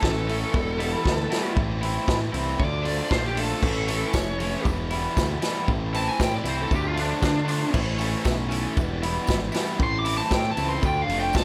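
A dark, compressed fuzz lead guitar solos from the first moment of this bittersweet, moody indie rock excerpt, over a raw overdriven garage guitar with subtle chorus and tape echo, a thick fuzz guitar riffing in the background, and a growling, overdriven picked electric bass. A punchy, up-front vintage acoustic drum kit with crash, hi-hat, kick and a medium-tuned snare holds a straight 4/4 feel, and a very quiet, jingly tambourine joins at 3.6 s. The chords cycle through A, Em7, Am and Dm, with an Aadd9 arriving at 7.7 s, and the mix carries little reverb.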